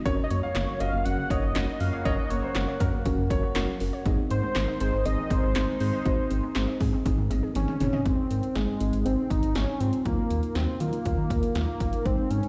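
A thick, detuned unison lead with vibrato carries the melody up front in this upbeat, bright synth-pop excerpt, over punchy 80s electronic drums with gated reverb on the snare and toms and a fill at 7.1 seconds, a round analog bass, muted felt-like synth keys with a vintage warble, a dusty lo-fi pluck playing arpeggios and a sweeping resonant pad that both drop out at 8.0 seconds, and a concert grand piano with audible action noise adding a brief second line until 3.7 seconds, all heard through a stone room's reverb.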